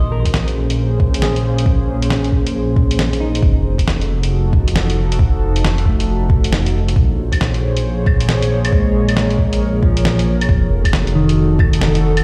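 Heard as if played through a big sound system in a bare room, this future garage cut sits in a large studio reverb, giving it a ghostly, nocturnal air. At 136 BPM in 4/4 with a 62% swing on the 16ths, it stays in Bb minor, cycling between Bbm9 and F7b9. A dark, detuned sawtooth bass sits up front with deep, rumbling, beating tones and tube saturation, while a warbling tape-like pad holds mellow, nostalgic chords through chorus, built-in reverb and vintage 12-bit sampler grit. A clean, hollow-body semi-hollow electric guitar, fingered and shadowy in tone, plays accompaniment through tape echo, and the bass, pad and guitar all pump with sidechain compression. An overdriven, soft electronic kick enters at 0.3 seconds and stops at 11.7 seconds, joined by a muffled, compressed lo-fi sampler-style kit of claves, hi-hat and a fat snare.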